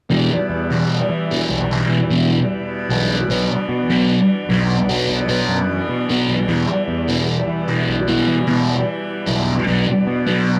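A slow, straight rock pulse in four carries this trippy, hypnotic passage, cut from a longer piece and built on a single section that alternates between Em7 and Bm chords. Up front, a thick, double-tracked fuzz guitar plays a low, distorted riff colored by phaser, while a dark, round and punchy bass, picked and overdriven with its own fuzz, sits beneath it. A vintage combo organ holds sustained chords behind them, its reedy tone soaked in heavy vibrato yet otherwise clean. Underneath, an acoustic tanpura sustains a softly plucked, buzzing, shimmering drone that deepens the trance-like atmosphere. The recording sounds like a rough rehearsal room with moderate ambience and warm saturation, and all four parts enter at 0.1 seconds and play on until the piece cuts off, the bass stopping around 10.4 seconds, the guitar around 10.5, and the organ and tanpura around 10.6.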